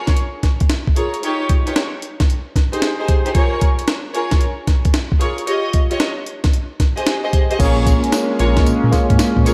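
Set in a moderate, lush hall reverb with a big arena sound, this punchy, confident new jack swing cut opens on intimate, bowed string-section stabs and a gritty, compressed breakbeat kit up front with a thumpy kick, high-tuned snare, hi-hat, tambourine and crash, before a clean tine electric piano, a shimmering chorused pulse-width pad and a smooth, gliding sawtooth synth bass with vibrato and portamento all join at 7.6 seconds.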